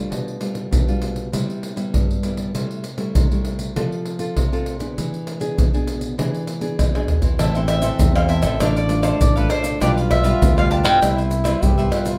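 Yearning yet lively, this short excerpt from a longer samba and choro piece moves at 99 BPM in a straight 4/4, set in A minor. A fingerpicked nylon-string guitar with a classical touch opens the accompaniment, joined almost at once by deep surdo, pandeiro, tamborim and tube shaker, which sit up front though they carry the sound of a large room. The chords pass from G7/B through Cmaj7, Am7/C, F and E7, and a drum fill from 6.8 to 7.4 seconds leads into a new section. There a bright, punchy fingered electric bass, a crisp picked cavaquinho and a breathy trombone all enter, the trombone playing a whispered, intimate second line with light vibrato, soft attacks and scooped notes in a jazz style. Moments later a round, double-strung mandolin takes the melody over Am, Dm/A, G7/B and Cmaj7, captured with close, detailed microphones and light reverb.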